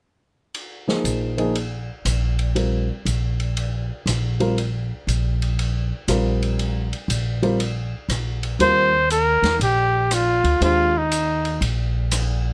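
Modal jazz at 119 BPM in a swung 4/4, searching and hypnotic, in which an airy drum kit with dark cymbals and a medium-tuned snare, a woody pizzicato upright bass and an intimate baby grand piano with audible action noise circle a rootless Ebadd9 chord until a warm trumpet with vibrato, scooped notes and a smooth top steps up front for a solo at 8.6 s, heard through close, detailed, nearly dry microphones in a passage cut from a longer piece.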